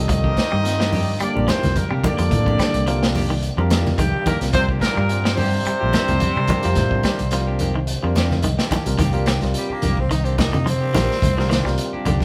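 A raspy, punchy tenor saxophone takes a gritty solo at 9.6 seconds, following a tight, octave-doubled horn section that carries the melody over brilliant background trombones and a distant, very quiet duduk, while a barky, lightly overdriven tine electric piano (with a fill at 7.9 seconds), round fingered bass, saturated breakbeat drums with a tight kick, ringing congas, and bright, clean picked arpeggios and stabs from an electric guitar and a semi-hollow guitar drive this intense, hypnotic afrobeat excerpt, played live in a large studio room.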